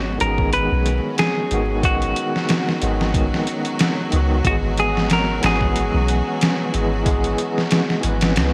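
Melancholic and cinematic, this brief trip hop excerpt in G# minor moves at 92 BPM with a swung feel, as gritty, pitched-down sampler drums with a thumpy kick and a medium-tuned snare, overdriven and washed in gated reverb, enter at 0.2 seconds over a deep, round 808-style bass, a barky, tremolo-laden electric piano through tape echo, and a clean hollow-body guitar melody soaked in dub echo and 12-bit grit, while a lush string section and a very quiet, tense drone sit in the background of a bright 1980s-style digital mix dusted with vinyl crackle, the kick dropping out at 8.4 seconds.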